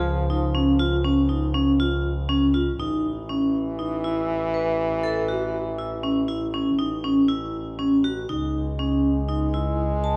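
This is a contemporary instrumental chamber piece in an uneven 11/8 meter, cut from a longer work, moving at 240 BPM counted in eighths with a straight feel in A lydian. The mood is playful and shimmering, carried most of all by a vibraphone struck with hard mallets, whose metallic, ringing arpeggios sit up front and carry a slow motor vibrato across a range from C#4 to A5. Beneath it, a single bowed double bass plays an earthy, rich bass line with light vibrato and a smooth top, also placed up front, while a solo French horn adds a clear second line in classical style. The horn, with its own light vibrato, stays in a narrow low register between E3 and G#3 and is the quietest of the three. The harmony moves from C# to A at 2.8 seconds, where a new section begins, and turns to C#m at 8.3 seconds, all within a recital hall whose reverb lingers for about 1.8 seconds.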